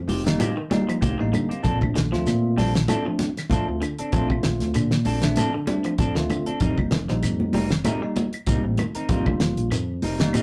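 Afrobeat with a hypnotic, driving swing, this short cut from a longer piece rides a dark, round fingered bass and an up-front damped 70s drum kit with a fat snare and tight kick, while bright high-tuned congas, a grainy shekere and woody claves sit in the background. A clean picked electric guitar plays stabs, a twangy guitar at the edge of break-up weaves arpeggios from 0.6 seconds, and a bell-like tine electric piano fills in the accompaniment over chords moving between F9sus4 and Bbmaj9. The whole thing sounds like a rough rehearsal-room take, with tube saturation and a wet small-room reverb.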